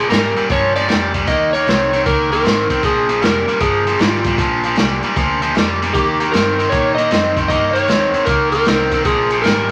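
The recording carries vinyl crackle and a moderate large-studio reverb around the band. This swaggering, rollicking electric blues shuffle is cut from a longer piece. It moves at 154 BPM in 4/4 with a 66% swing on the eighth notes. A bright, overdriven electric guitar sits up front from the start with a picked, compressed riff in its lower register. Over it, a slide guitar carries the melody with a warm, slightly broken-up, fingered tone. The vintage bass enters at 0.1 seconds, dark, round and foam-muted, together with a gritty, saturated breakbeat kit of hi-hat, tight kick and medium-tuned snare, its top rolled off. The harmony centres on Bb7, moves through Eb chords, and closes on a bare Bb7 at 9.1 seconds.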